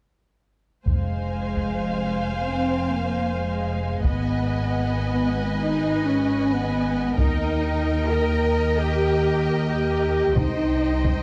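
Dark and epic, this cinematic orchestral film-score excerpt unfolds in free time in F minor, moving through Fm, Abm, Eb and Cm over roughly ten seconds. Bowed strings carry the harmony: a lush violin section sings the melody with soft-attacked vibrato from the background while a second violin line and a close, focused viola section fill in beneath. A woody cello section sits further back, and a rich double bass section stands up front, anchoring the low end. A punchy French horn section holds sombre sustained chords, while a taiko ensemble struck with heavy sticks drives the piece throughout. Timpani played with hard mallets add articulate accents at the opening, from 0.9 to 1.5 seconds, and again near the close, from 10.4 to 11.0 seconds, all within a moderate recital-hall reverb and a dark, warm production.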